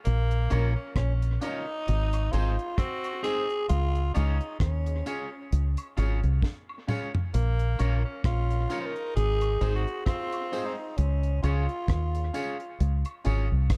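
An edgy tenor saxophone with dub echo opens this meditative, serious roots reggae excerpt at 66 BPM, joined almost at once by a round, foam-muted electric bass and a dry, up-front drum kit with a high-tuned snare, then a twangy, slightly broken-up guitar with dub echo, clear vintage grand piano stabs and background tambourine and woodblock, before a raspy, growling tenor saxophone with dub echo carries the melody from 1.0 seconds over a Bbm–Ab–Db progression, with a drum fill at 6.4 seconds in a dark, warm, dry production.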